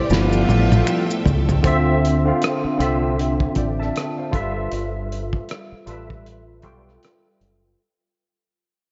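A barky, lightly overdriven tine electric piano with ensemble chorus opens this soulful, late-night neo-soul R&B excerpt at 78 BPM with a swung 16th feel, soloing over a fill from a cloth-damped, thuddy drum kit, while shimmering sawtooth string-machine violins, tight saxophone-section stabs and close maracas and finger snaps sound only within the first 1.6 seconds; the piano, a round, punchy dub bass and the muffled, gritty drums then carry on from Dm9 back to G13 through a fade-out, all steeped in a lush hall reverb that leaves the mix dreamy and soft-topped.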